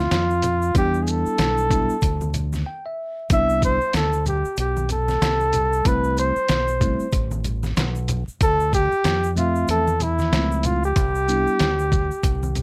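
Smooth and cool, this swung jazz-hop cut at 94 BPM in C major puts a breathy, mellow flugelhorn up front with vibrato and scooped notes over plate-reverbed tine electric piano chords that add a fill at 2.3 seconds, just ahead of a brief break at 2.7 seconds. Beneath them sit a round, dark fingered dub bass, a muffled, compressed sampler-style drum kit with a thumpy kick, bright tube shaker and soft-handed congas in the background, and a layer of vinyl crackle.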